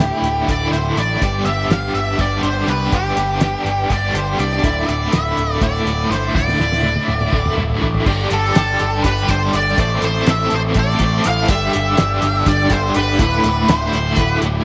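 From the first beat, a dark, hypnotic psychedelic rock passage in 7/8 brings in an up-front octave-fuzz lead guitar carrying the melody through wah and tape echo, a bright, double-tracked overdriven guitar riff shimmering with tremolo, a growling overdriven picked bass, a very quiet flute-like tonewheel organ holding soft chords through a slow rotary speaker, and a cloth-damped, thuddy drum kit with a fat snare and dark cymbals that plays a fill from 6.4 to 8.1 seconds before the chords shift into a new section, all in a small, lightly reverberant room.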